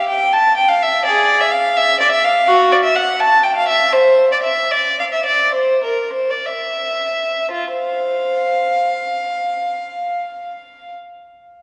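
A serene, dance-like baroque-style suite movement in 6/8, this short cut from a longer piece features a single solo violin with a dark, nasal, gut-string period tone, bowed with a reedy edge and held up front in a lush church reverb, stretching with rubato and slowing from 3.2 to 7.5 seconds before a new section begins.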